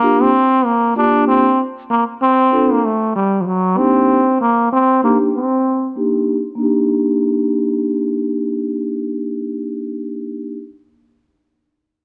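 Swung sixteenths at 96 BPM in 4/4 carry this mellow, nocturnal hip hop fragment, where a buzzy, breathy muted trombone sings a smooth jazz-style solo melody through slapback echo and a low-pass filter until 5.9 seconds, while a ringing, metallic vibraphone played with soft mallets and the motor off comps up front over Bb69, F and Ebmaj7 chords, carrying on alone to 10.6 seconds inside a dark, lightly reverberant mix shaped by a filter sweep over the opening 6.6 seconds.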